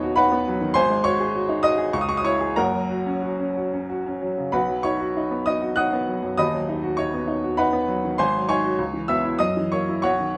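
In a flexible, rubato 3/4 lilt at roughly 90-104 BPM, this passionate romantic character piece for solo upright piano in B major, a short cut from a longer work, spans deep bass to bright treble with a clear, woody, vintage tone sitting up front in a moderate studio reverb, as the harmony moves from B/D# through G#7, C#m and F# to B before circling back and closing on C#m7 and F#7 near 9.4 seconds.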